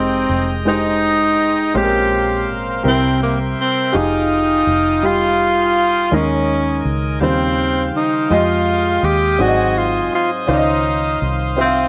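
This slow gospel excerpt opens with a breathy, close-miked tenor saxophone carrying the melody up front, its clear jazz-style line marked by scooped notes between Bb3 and G4. A woody, polished upright piano accompanies throughout, ranging from Ab2 to F5, while a reedy tonewheel organ holds sustained chords alongside, lightly overdriven with audible key click and a slow rotary speaker. A foam-muted, fingered electric bass anchors the low end with a direct, amped tone between F1 and F2. The music moves at 55 BPM in a straight 6/8, with rich minor-key harmony that passes from Fm11 through Bbm9 and C7, settles on Eb7sus4 and Eb13, and closes on Dbmaj9 at 10.5 seconds. Moderate spring reverb and studio ambience frame the reverent, hopeful mood.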